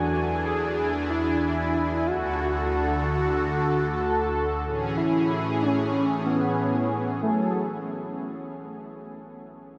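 A warm, detuned sawtooth pad with a slow attack and chorus sits up front from the start, holding sustained chords over E7, D and Amaj7 in F# minor, while a thick, bold unison lead with vibrato, wave-folding and ring modulation carries the melody beside it. This moody, nostalgic synthwave fragment moves at 93 BPM in a straight 4/4, the lead touched with subtle chorus and a diffuse ambient delay. Both parts stop at 7.5 seconds, leaving the cavernous reverb tail and a faint mains hum to ring out over the closing F#madd9 in a dreamy, reverb-soaked mix cut from a longer piece.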